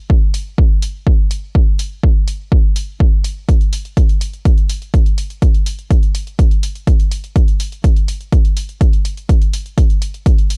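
Gritty and driving, this short house fragment in straight 4/4 is built entirely from drums. A punchy, overdriven analog kick sits up front from 0.1 seconds, joined at 0.3 seconds by an electronic hi-hat that is also distorted but sits far lower in the mix. The dry hardware sound has little reverb, keeping the pulse raw and close through to 10.6 seconds.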